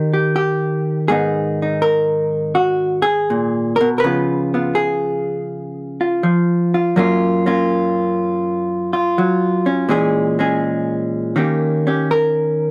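A dark, clean, compressed vintage hollow-body electric jazz guitar, picked and up front under close, detailed microphones with light reverb, carries this moody, smoky solo jazz piece, cut from a longer performance, in G# minor at 82 BPM with a swung 4/4 feel and tuning to A4 = 438 Hz, opening on an Eb before moving at 1.1 seconds through G#madd9, C#7, F#maj7, A#m7b5 and D#7.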